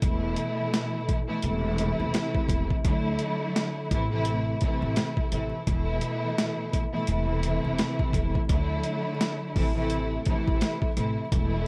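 A gritty, dark boom-bap hip-hop excerpt at 85 BPM in A minor, with a swung sixteenth-note feel and a slightly flat tuning. A dark, lush bowed string section carries the harmony throughout, its expressive vibrato and smooth top softened by cassette-tape coloring, filtering and plate reverb. Underneath, a woody pizzicato upright bass with gut strings adds a thumpy low end. The sampler-style drum kit sits up front, compressed and overdriven with 12-bit grit, pairing a thumpy kick and medium-tuned snare with hi-hat, its sound re-recorded in a small room. The chords cycle twice through Esus4, Am/E, Dadd9 and Am, while vinyl crackle and a moderate studio reverb give the whole a dusty, moody atmosphere.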